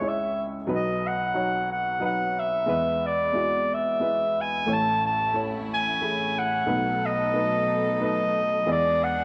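Heartfelt and nostalgic, this fragment of an acoustic folk-pop ballad moves at 90 BPM in an unhurried 3/4, its harmony drifting from C#m through E and A toward a closing E7. A classical-style clarinet carries the melody up front with a distant, roomy quality, while an intimate, woody upright piano accompanies from the start, slightly detuned and with its action noise audible. At 4.7 seconds a rich chamber string section enters with bowed, earthy sustained chords, a smooth top and light vibrato, all set in a wet spring reverb.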